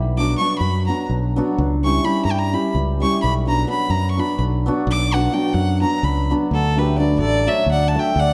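A clear, focused fiddle with light vibrato leads this fiery, restless Balkan wedding-band excerpt in 7/8 at 256 BPM in eighths, soloing up front over a punchy, direct fingered electric bass and a shimmering, ringing hammered dulcimer as the harmony moves from B minor through C# diminished. At 6.5 seconds the music shifts to D major, and a reedy, round, airy accordion slips in behind as a second line. A moderate recital-hall reverb gives the whole ensemble a gentle sense of space.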